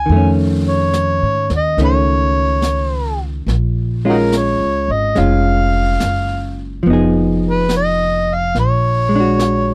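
A gritty, amplified harmonica carries the melody from the first moment, with light vibrato, tongue slaps and scooped notes, over a dark, clean, picked hollow-body guitar and a woody, growly pizzicato upright bass. This melancholic, wistful jazz ballad moves at a slow 71 BPM swing in 4/4, cut from a longer piece. A natural brushed kit of snare and hi-hat sits quietly beneath the up-front trio from 0.1 seconds, as the chords move from F7b13 through Bbm7 and Fm7b5 to Bb7alt in a dry, close 1970s-style studio sound.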